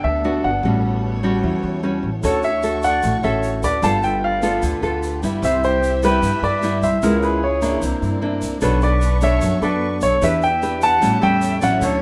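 Romantic and breezy, this bossa nova moves at 150 BPM in a straight 4/4, with an intimate concert grand piano carrying the melody up front, its action noise audible and its sustain long, over fingerpicked nylon-string guitar with a touch of finger squeak and a growly, woody pizzicato upright bass. Lush bowed strings hold sustained chords with vibrato and portamento in the distance, while from 2.2 s an airy flute group adds a soft-attacked second line in the background and a grainy egg shaker joins from afar. Light reverb surrounds the playing as the harmony drifts through rich chords from Gmaj7 through Bm9 and Em7 to A13 in this cut from a longer piece.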